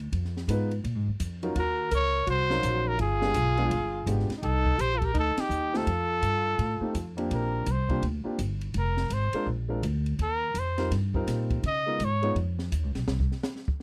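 At a swung 167 BPM in 4/4, this small-group swing and bop passage in Bb major has a warm, swinging mood. The pizzicato upright bass sits up front with a woody, thumpy steel-string tone, while the open drum kit pairs dark cymbals and a high-tuned snare with a boomy kick across hi-hat, ride and snare. A concert grand piano with deep bass and short sustain accompanies, and at 1.6 seconds the clear, present trumpet takes the melody with vibrato as the alto saxophone adds a second line marked by subtone and scooped notes. The band strikes an accent at 5.3 seconds, and from 7.3 seconds the trumpet moves into a solo over chords such as Bb69, Eb69 and Db9 while the saxophone has already dropped out. The sound is a dry, close 1970s-style studio recording with little reverb.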